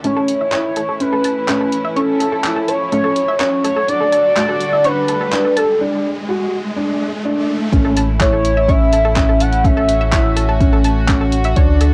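Recorded at home on cassette in a small, wet-sounding booth, this luminous, hopeful piano-and-strings electronica fragment at 125 BPM in A major sets a velvety, chorused synth lead up front over soft sul tasto strings, bright chorused analog pluck arpeggios with sidechain pumping and tape echo, a mellow felt-muted upright piano riff with audible action noise, a round, tube-saturated analog bass, and deep house handclaps and hi-hat, while an electronic riser builds until 7.7 seconds, when a deep, tape-soaked electronic kick drum drops in.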